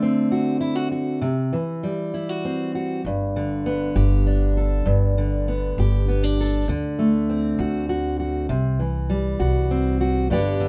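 Acoustic folk in a pastoral, gently warm mood, this short cut from a longer piece moves at 66 BPM in an unhurried 6/8 in G major, with a full-bodied, up-front fingerpicked steel-string guitar, finger squeaks audible, moving through D7, C and Gadd9 while a dark, woody pizzicato upright bass joins at 3.0 seconds, all set in a moderate studio reverb.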